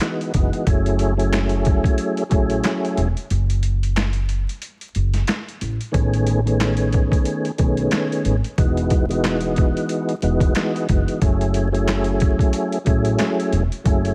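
Reflective and dark, this 91 BPM boom-bap hip-hop excerpt in F# dorian, swung on the 16ths, sets a smooth tonewheel organ with key click, slow rotary speaker and cassette-tape haze over a gritty, pitched-down sampler kit of thumpy kick, high-tuned snare, hi-hat and handclaps, while a woody pizzicato upright bass enters at 0.3 seconds, vinyl crackle adds texture, a break falls between 3.3 and 5.9 seconds, and the chords move through Emaj9, F#m9 and Amaj9#11.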